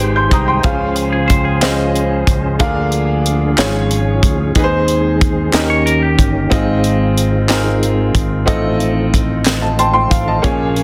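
A dense, heavily limited studio mix with light reverb carries this jubilant, hopeful slow gospel excerpt in 6/8 at 61 BPM in Ab major, where an intimate, boxy grand piano with audible action noise plays the accompaniment and adds a fill at 9.5 seconds, a clean tonewheel organ holds sustained chords in the background through a slow rotary speaker and chorus vibrato, a direct, amped fingered electric bass anchors the low end, an airy, polished fusion drum kit with a high-tuned snare and punchy kick sits up front, a bright, compressed semi-hollow electric guitar picks a brief second line first heard at 1.1 seconds, and very quiet, crisp group handclaps join at 1.6 seconds.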